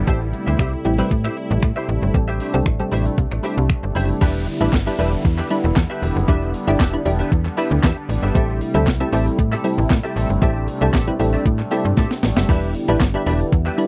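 Dance-pop with a bittersweet, energetic drive, this excerpt pairs a thumpy, tape-tinged drum machine with snappy metallic FM bass, crisp wave-folded chord stabs and a sweeping, airy pad all pumping under sidechain compression, while a twangy direct clean electric guitar riff sits over a very quiet jingly tambourine, a background downlifter falls in from 4.2 to 8.4 seconds, and a drum fill at 12.0 seconds leads into the return of the Em7 chord.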